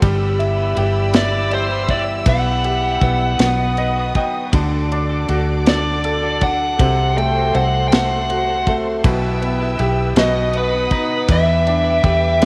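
Dramatic and melancholic, this slow six-eight pop ballad in E minor moves at 53 BPM in dotted quarters, heard as a short portion cut from a longer piece. A clear, polished concert grand piano with deep bass and short sustain carries the accompaniment throughout, stepping forward with a fill between 3.4 and 4.5 seconds, while a lush studio string section holds sustained chords with expressive vibrato and portamento. Underneath, a dark, foam-muted fingered electric bass sits round and up front beside a punchy, mid-forward acoustic drum kit of kick, snare and ride with a rolled-off top. A bright, twangy clean electric guitar, recorded direct and compressed, picks arpeggios in the background with slapback echo. From 1.2 seconds a dark, bluesy lead guitar with distortion and slapback echo takes the melody up front, and the whole mix sits in a moderate echo-chamber reverb as the chords move from Em7/G through B, D and F#dim/C before settling back on Em7.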